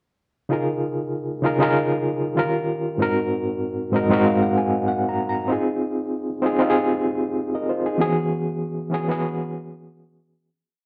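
Warm and lush, this short soul piece moves at 96 BPM in 4/4 with a light sixteenth-note swing, sitting in D-flat major with tuning set slightly low at A4 = 438 Hz. A lone overdriven reed electric piano carries the whole verse, its reedy, barky tone roughened to a gritty edge by a combo amp and colored with tremolo. Placed up front, it plays pushed chord rhythms in rootless voicings, dressed with grace notes and a short fill from 3.6 to 5.5 seconds. The harmony travels from Db6 through Eb7, Ab7 and Fm7 before settling on E6 as the piece fades out from 8.0 seconds. A moderate large-studio reverb gives the live, single-room performance a sense of open space around the instrument.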